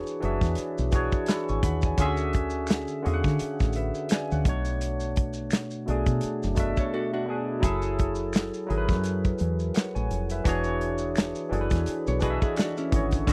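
This is a dry, close recording in a 1970s studio style with little reverb. It is a short cut of sultry, soulful neo-soul R&B at 85 BPM in 4/4, with a swung sixteenth-note feel. A barky, bright tine electric piano sits up front through a combo amp, clean and bathed in lush chorus, and moves through E13, Dmaj9#11, Bm9 and F#m9 before returning to E13. Beneath it, a deep, round dub bass with a dark, foam-muted tone holds the low end. A warm, mid-forward soul drum kit plays hi-hat, kick and snare, with a tight kick, a medium-tuned snare and a rolled-off top. Vintage, band-limited maracas and finger snaps sit further back in the mix. A dark, clean hollow-body jazz guitar adds a picked second line at 6.8 seconds, as the drums drop out at 6.9 seconds, and it returns at 12.1 seconds.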